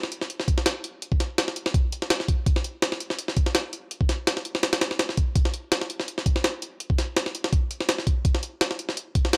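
A compressed, pitched-up jungle drum kit plays alone and up front for the full 9.4 seconds of this atmospheric, frenetic drum and bass fragment at 166 BPM, its thumpy kick, high-tuned snare and hi-hat riding a slight sixteenth-note swing in a dry, gritty hardware recording.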